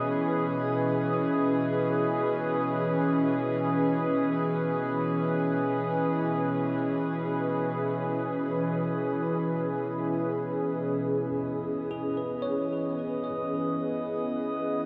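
A dreamy, reverb-soaked mix with a long, hazy tail and a soft, rounded top end frames this weightless, peaceful ambient passage in free time and E major, cut from a longer piece. Up front, a warbly, nostalgic tape-like pad holds a detuned Emaj7 chord through chorus and shimmer reverb, while a glassy, ethereal glass harmonica hovers in the background, fading over the first 11.1 seconds. At 11.9 seconds a bright, barky tine electric piano enters with bell-like arpeggios carried on delay and shimmer reverb.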